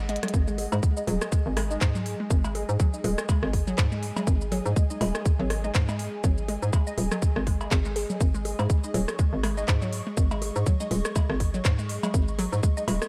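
This minimal techno excerpt runs at 122 BPM in 4/4 with a 57% swing on the sixteenths, and its mood is clinical and sparse. A tight, layered electronic kick sits up front, joined by a clicky minimal kit of handclaps, hi-hat and shaker, plus electronic rim click, congas, bongos and cowbell that carry a tape-warm, small-room character and a dub echo, with a brief break and drum fill opening the first fraction of a second. Underneath, a hollow, knocking FM bass bounces with a punchy, fast attack through tube saturation and sidechain pumping, while a nasal, detuned square-wave pluck repeats a riff through chorus and digital delay. An airy, breathy pad hovers quietly in a high register with a slow attack and long release, and from 1.0 s a muted, deep dub chord stab drifts in the background through phaser and echo. The production is dark, with light reverb and a digital ambience framing the spare arrangement.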